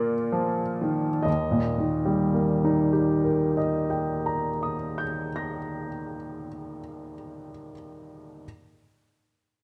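Classical romantic nocturne for solo piano, dreamy and nostalgic, in Eb major and 6/8 with a free rubato feel at a slow 24 BPM counted in dotted quarters. A baby grand carries the whole fragment, which is cut from a longer piece, spanning Eb2 to Bb6 with a clear, natural tone and long sustain. The instrument sits up front and intimate, close enough that the noise of its action is audible. The opening slows down over a Bb harmony, then settles onto Eb at 1.3 seconds as a new section begins and runs to 6.2 seconds. A wet recital hall reverb with a 1.6-second decay surrounds the piano.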